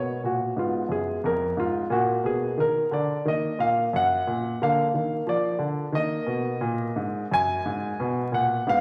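Introspective and grave, this short cut from a longer baroque-style suite movement for solo grand piano unfolds in Eb minor at 89 BPM in a rubato 4/4, its warm, polished, up-front tone with short sustain moving from a rootless Ebm through Fdim and Bb back to Ebm across 8.8 seconds, set in a wet scoring-stage reverb beneath a layer of vinyl crackle.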